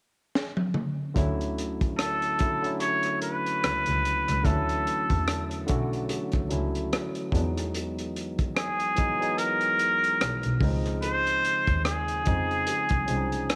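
R&B and neo-soul with a soulful, sensual swing at 73 BPM, where a gritty, saturated breakbeat drum kit opens with a fill before a barky, lightly overdriven tine electric piano and an intimate bowed double bass with airy sul tasto tone settle over Dmaj9, Emaj9 and C#maj9 chords, while a nasal, breathy trumpet with straight mute carries the melody from 2.0 s with scooped notes and light vibrato.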